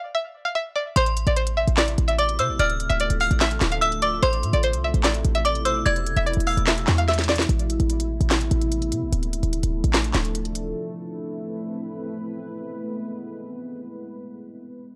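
A half-time trap groove drives this dark, hard-hitting hip hop excerpt, with an electronic kit of sharp snare, crisp hats and handclaps sitting up front beside a punchy, tight 808-style bass, and a drum fill closing the first section before the drums stop at 10.6 seconds. A twangy, warbling resonator pluck carries a bright melody through chorus, phaser and analog delay until 7.5 seconds, joined by a metallic, inharmonic FM bell ringing a higher second line, while a deep, moody pad with a slow attack and built-in reverb sustains chords cycling through Amadd9, Dm and E until 14.0 seconds. The recording is dry and gritty, with a cassette-tape character.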